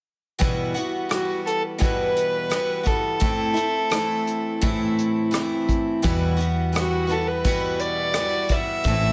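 A dark, woody fiddle carries the melody from 1.1 seconds, bowed by a single player with light vibrato and sitting up front in the mix. This short folk rock and heartland rock excerpt moves at 85 BPM in a straight 4/4 feel in E minor, with a dusty, reflective mood. A bright, shimmering twelve-string acoustic guitar with a boxy parlour character picks the accompaniment from 0.4 seconds, its octave-doubled strings placed close to the listener. A soft brush drum kit in a small, natural-sounding room plays hi-hat, rim click and a punchy kick, while a round, dark hollow-body electric bass with an amped tone joins at 6.0 seconds. The harmony moves from Emadd9 to Am and back to Emadd9, all set in light studio reverb with a gently rolled-off top end.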